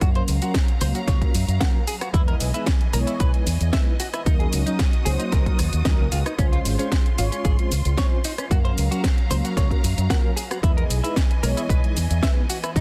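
The punchy, overdriven electronic kick drives this feel-good, groovy nu-disco excerpt at 113 BPM, joined by a house kit with a cracking snare, hi-hat, rim click and shaker, a bright fingered bass with an envelope filter and sidechain pumping, a clean, compressed guitar riff with lush chorus and analog delay, mellow detuned synth brass, and a distant, focused string section holding sustained chords over a Gbmaj7, Emaj7, Ebm7, Dbmaj7 progression in a dense, heavily limited modern master.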